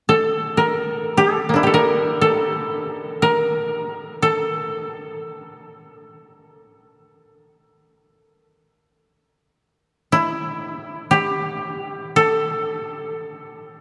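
Set in a vast, echoing cathedral space with a long reverb tail, this austere, calm fragment of Japanese traditional music, cut from a longer piece, features a solo koto, woody and up front and plucked with fingerpicks, carrying an unmeasured melody in A sen between Bb3 and Bb4, tuned to A4 = 444 Hz, from 0.1 s to its close at 13.8 s.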